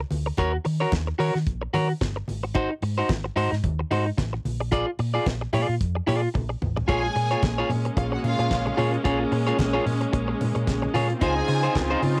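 A driving, sultry disco groove at 111 BPM with swung sixteenths opens this cut from a longer piece, built on a damped 70s drum kit with a fat snare and tight kick on cassette tape, very quiet low-tuned congas, a round, punchy hollow-body fingered bass and an up-front, slightly broken-up picked electric guitar accompanying over Ebm7, Ab7 and Bb7, until a drum fill at 6.3 s leads into lush, close bowed string chords and an expressive string second line full of vibrato and portamento, both entering at 6.9 s over Bbm7 and Dbmaj9 in a dry home cassette recording.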